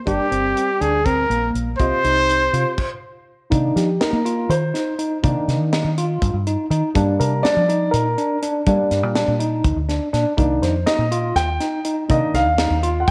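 A moderate echo-chamber reverb gives this brooding, driving progressive instrumental a studio sheen. It runs in 7/8 at 245 BPM counted in eighths, with a straight feel in C minor. Up front, a close-miked, punchy trumpet carries the melody with vibrato and scooped notes. Beneath it, a dark, mellow baby grand piano plays accompaniment while a bright, clean tine electric piano spins arpeggios through its built-in speakers. A deep, round, foam-muted fingered electric bass and a tight funk drum kit anchor the groove; the kit is recorded naturally in a small room, with a high-tuned snare, a tight kick and dark cymbals. After a stop at 2.8 seconds, the excerpt moves at 3.5 seconds into a new section where the grand piano takes a solo over Cm7 and Gm harmony.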